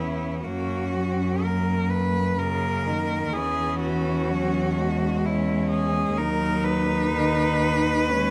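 Four bowed cellos begin together in this short, lyrical classical excerpt for cello ensemble, moving at a rubato 63 BPM in 3/4 and tuned to A4 = 436 Hz: an up-front, smooth and even vibrato melody sings over an expressive second line with portamento, a focused accompaniment, and an intimate, close bass played sul tasto with an airy bow, soft attack and light vibrato, all moving through F#, F#5/E and B/D# in a detailed, lightly reverberant space.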